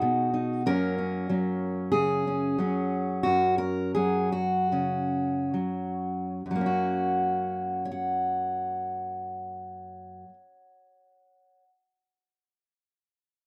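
A pastoral, hopeful mood opens this short folk excerpt, a solo piece for fingerpicked steel-string acoustic guitar in F# major. The tempo moves freely in a rubato 4/4, ranging from 63 to 95 BPM, and the playing slows down between 0.7 and 6.5 seconds. The guitar sounds warm, sitting up front with an auditorium-like body, and spans from its low F#2 up to F#5. A brief B chord at the very start gives way to F# at 0.7 seconds, and a second section begins at 6.5 seconds. Light reverb surrounds the instrument, and the tuning sits slightly above standard pitch, at A4 = 441 Hz.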